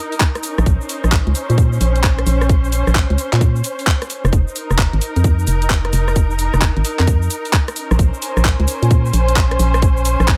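UK garage in a moody, soulful two-step vein, this 10.4-second cut from a longer piece moves at 131 BPM with a swung sixteenth-note feel over Bbmadd9, F7(no3) and Bbm9 chords. A veiled, con sordino string section bows soft-attack tones with vibrato and a sidechain pump from the start, while an overdriven garage kit of cabasa, handclaps, hi-hat and rim click joins at 0.1 seconds, followed at 0.2 seconds by a tight, up-front electronic kick. From 0.6 seconds a hollow, dark, organ-like FM bass adds fast-attack, decaying notes, all in a dry mix with little reverb.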